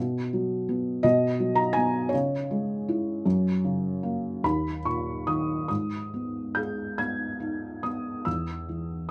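Classical solo piano, lyrical and wistful with a melancholic turn, played on a felt-muted upright in a rubato 6/8 whose dark, intimate tone and audible action noise sit up front in light reverb, drifting into a minor-key passage at 5.7 seconds in this short cut from a longer piece.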